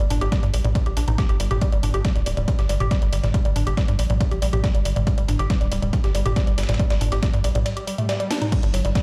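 A woody, warbling wave-folded pluck riff with chorus, tube saturation, delay and sidechain pumping opens this hypnotic, driving peak-time techno excerpt in G minor at 139 BPM, alongside a tight, punchy sawtooth sequencer bass and an overdriven techno kit with a cracking snare, crash, hi-hat and toms. A tape-warm analog kick sits up front from 0.3 seconds, while a gritty, compressed sampler-style kit with ride and a medium-tuned snare stays in the background, all inside a large studio reverb that sounds like a big sound system in a bare room. At 7.7 seconds a break brings an electronic swell and a drum fill with a band accent, and at 8.5 seconds a metallic, eerie FM drone with phaser enters, barely audible.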